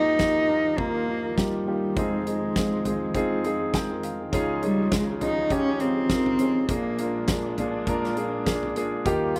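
A dark, woody bowed cello carries the melody with vibrato over a deep-bassed grand piano, both up front with a slapback echo, while a smooth, expressive string section holds sustained chords with portamento in the background. From 0.2 seconds a big, natural-sounding acoustic drum kit with a fat snare and punchy kick drives this hopeful, uplifting piano-driven pop excerpt at 102 BPM in 4/4 with a light swing, and the piano adds a fill at 3.4 seconds. The dry sound carries little reverb as the harmony moves through Ebadd9, Fm7, Dbadd9 and Bb7.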